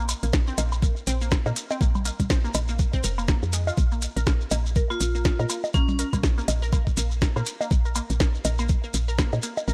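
A squelchy, resonant blip pluck opens this short cut from a longer minimal techno track, its bright pulse-and-saw riff coloured by phaser, analog chorus and analog delay and pumped by sidechain, over a round, woody FM bass that sits dark and up front with the same pumping. At 122 BPM in 4/4 with a 58% swing on the 16ths, the mood is quirky and clinical, built around a single Bb5 chord. A techno kit of cracking snare and smooth hats, re-recorded in a small room, sets the groove, and a knocking, tape-tinged electronic kick joins just after. A grainy, close shekere and analog-sounding woodblock, bongos and congas with tape echo fill out the percussion. Briefly, from 4.9 to 6.0 seconds, a metallic vibraphone struck with hard mallets rings out a short melodic figure through its own tape echo. The recording is dry and gritty, with a hardware edge and little reverb.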